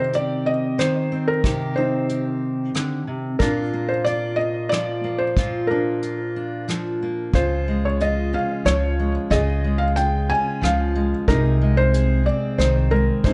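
This acoustic folk-pop ballad in C minor moves at 92 BPM in a straight 3/4, its heartbroken, intimate mood carried by a felt-muted upright piano that sings the melody from the start, soft and mellow with audible action noise, short sustain and a touch of analog delay. Beneath it, a fingerpicked steel-string acoustic guitar supplies a bright, full-bodied accompaniment, finger squeaks and all. A soft brush drum kit enters at 0.1 seconds with hi-hat, a tight kick and rim clicks, sounding natural in a studio room. At 7.3 seconds a pizzicato upright bass joins, woody and sitting a little louder than the other parts. The chords pass from Cm to Bb, then Db and Ab/C, with every instrument up front under light reverb in a dark production, and the passage is cut from a longer piece.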